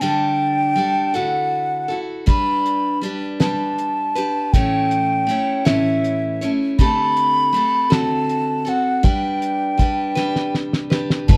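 A baroque flute with an airy, wooden tone, soft attack and vibrato carries the melody from the start over a bright, picked steel-string acoustic guitar, opening this gentle acoustic folk passage in G major at a slow 53 BPM in 6/8. A cloth-damped drum kit joins at 2.3 seconds with a dry, thuddy sound, fat snare and tight kick, and plays a fill from 10.2 seconds. An upright bass with a woody, growly pizzicato tone sounds a low G at 11.3 seconds, just as this section of a longer piece ends, all within a dark, warm production with light reverb and a faint mains hum.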